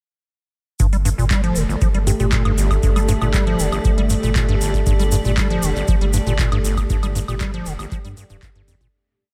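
This playful, trippy acid house piece runs at 118 BPM in a straight 4/4 and springs to life at 0.8 seconds on a G7(no3) chord. An overdriven electronic kick drives a four-on-the-floor pulse beside an analog drum machine's metallic hi-hats, handclaps and woodblock, while a grainy tube shaker adds hand-played sixteenths. Up front, a squelchy square-wave acid bass plays a resonant 16-step line with accents and slides through an analog delay, over a thick, saturated sub bass in a dotted rhythm, both pumping to the sidechain. From 1.3 seconds a warbling, nostalgic tape-like pad holds lo-fi chords with chorus and 12-bit sampler grit. A blurred granular cloud pad follows with slowly shifting, evolving chords, and a very quiet bell-like FM electric piano sparkles briefly. The groove sits in light digital ambience and fades out from 6.2 seconds.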